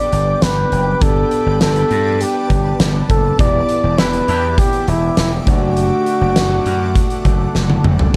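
A dark, warm production with light reverb and studio ambience frames this glossy, nostalgic 1980s-style pop excerpt in G major at 101 BPM. A breathy, intimate flugelhorn carries the melody up front over a bright tine electric piano with subtle chorus, a very quiet overdriven semi-hollow guitar, and a shimmering, ethereal ambient pad treated with chorus, reverb and phaser. A gritty, punchy slap bass and a huge arena drum kit with a fat snare, boomy kick, tambourine and toms anchor the G, Em7 and D/F# changes, a tight, vintage horn section adds a background stab at 4.0 seconds, and the flugelhorn stops at 7.5 seconds as a drum fill closes the passage.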